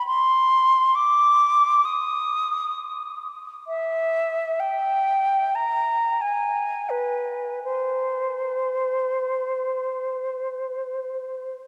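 This classical excerpt, cut from a longer piece, is a yearning, mournful solo for unaccompanied silver concert flute in C minor, played in free, expressive time and tuned to A4 = 437 Hz. The airy, metallic flute sings with vibrato and tongued notes between B4 and Eb6 from 0.0 to 11.5 seconds. A wet cathedral reverb with a 6.1-second decay surrounds it.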